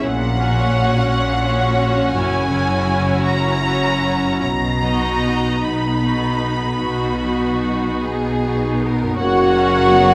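Classical, lyrical and warm, this excerpt in B major moves in a slow, rubato 12/8 at roughly 49-58 BPM, with a rich violin section singing the melody over a second violin line, background violas, a smooth cello section, a distant double bass section with portamento, and ringing harp arpeggios, all bathed in a wet scoring-stage reverb. At 9.2 s the winds and brass join on an F# chord: a bright oboe, a dark clarinet, a pure silver flute, a mellow bassoon, a dark and roomy horn section, a soft-edged trumpet with brief stabs, and a tuba beneath.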